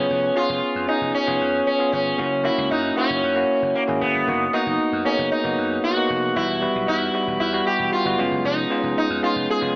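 Moving in a straight 4/4 at 115 BPM, this short excerpt, cut from a longer piece, is 1980s-style pop with a glossy, nostalgic mood. A sitar carries the melody up front from the start, its plucked tone buzzing and shimmering with sympathetic strings. A bell-like tine electric piano plays the accompaniment alongside it, clean and direct, while a punchy, amped slap bass sits much lower in the mix underneath. The harmony moves through C#7/E#, F#7, Bmaj7/F# and Emadd9 before returning to C#7/E# near 8.2 seconds. A lush hall reverb surrounds the sound, yet the whole recording carries the narrow, filtered character of AM radio.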